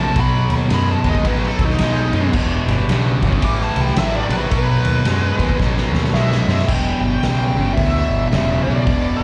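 Heavy and brooding, this swung blues rock and southern rock fragment, caught live through a club PA in a small room, opens with a fuzz lead guitar solo drenched in wah, distortion, slapback and tape echo that runs until 6.7 seconds, when the very quiet percussive tonewheel organ, with its key click and rotary speaker, also drops its sustained chords. Beneath them, a double-tracked, up-front cranked stack guitar drives an overdriven riff over a growling, bright fingered bass. A raw garage drum kit with a punchy kick and a saturated, rolled-off sound plays a fill from 5.6 seconds.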